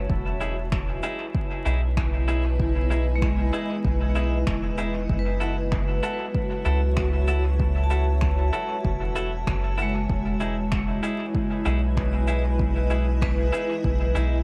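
Vinyl crackle and a small-room reverb frame this meditative, deep ambient dub piece at 96 BPM in 4/4 with a swung sixteenth feel, moving from Emaj7 to F#m7 and back. A round, soft sub bass sits up front under a cloudy, evolving granular pad, while a metallic vibraphone struck with hard mallets rings out arpeggios through dub echo, its slow motor vibrato adding shimmer. From 0.4 s a clean, picked semi-hollow guitar adds compressed stabs through echo, and dark, smooth shaker and finger snaps join, with a punchy, overdriven electronic kick tucked in the background.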